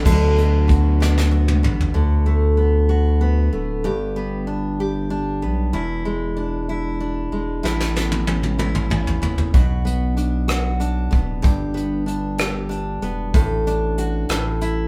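A woody, old-stringed picked acoustic guitar and a deep, saturated sine sub bass open this tender, swaying six-eight pop ballad fragment alongside a very quiet, full-bodied fingerpicked acoustic guitar that plays arpeggios only until 2.5 seconds, while a soft brush drum kit with a punchy kick and medium-tuned snare sits up front, drops away after 1.9 seconds, returns at 7.7 seconds with a fill, and the whole band plays live in one room under moderate studio reverb over chords moving from D6 through Bm to a closing A5.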